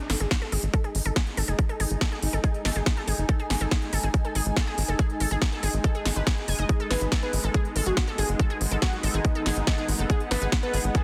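A swarming, detuned drone opens this excerpt from a longer psychedelic trance piece, holding tense sustained chords low in the background of a G# phrygian setting at 141 BPM in a straight 4/4. Almost at once a big-room dance kit with a punchy snare and crisp hats, a tight, driving sequencer bass and a bright, wave-folded unison pluck riff coated in cassette tape and dub echo arrive, with an overdriven electronic kick sitting up front from 0.3 seconds. A granular cloud pad drifts in behind them at 0.6 seconds, blurred and evolving, and both it and the drone breathe with sidechain pumping under their own reverb. At 6.7 seconds a thick, dark unison lead with a sub octave joins with a melody, shaded by phaser, dub echo and sidechain pumping. The mood is alien and psychedelic, and the dense, heavily limited master carries only a light reverb overall.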